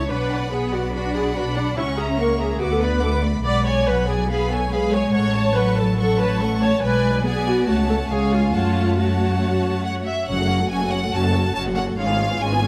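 In a straight, quick 4/4 at 142 BPM, this graceful and lively classical-period string orchestra excerpt settles into F# minor as clear, vibrato-rich first violins carry a smooth melody over an intense second violin line, lush close violas, expressive cellos with soft attacks and portamento, and an up-front, even double bass section, all set in a moderate scoring-stage reverb and cut from a longer piece.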